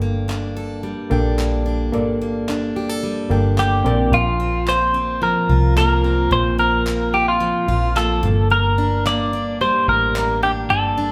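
Sunny and carefree, this acoustic pop excerpt moves at 110 BPM in Bb major, with a bright, full-bodied picked steel-string acoustic guitar and a round, punchy, foam-muted electric bass up front, while a gritty, barky electric piano through a combo amp plays only until 4.1 seconds. Hollow, close group handclaps run from 0.3 to 10.3 seconds. At 3.6 seconds a clean, compressed twelve-string electric guitar takes the melody over chords of Gmadd9, Bbadd9 and Bbsus2, with the band heard playing live together in a large studio with a lush reverb.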